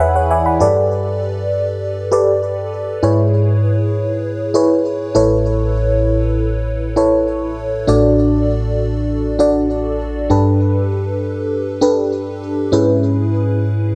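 Romantic and nostalgic, this short fragment of a longer pop piece moves at 99 BPM in a straight 4/4, carried by a solo FM electric piano layered with a soft pad. Its tone is lush, dreamy and detuned, with a fast attack that decays into a mellow glow, coloured by chorus, phaser and delay and sitting up front in a moderate plate reverb. A brief piano fill opens the first 0.6 seconds, then the harmony drifts through Gadd9, E6/G#, Aadd9 and D/A until the piece is cut at 13.9 seconds.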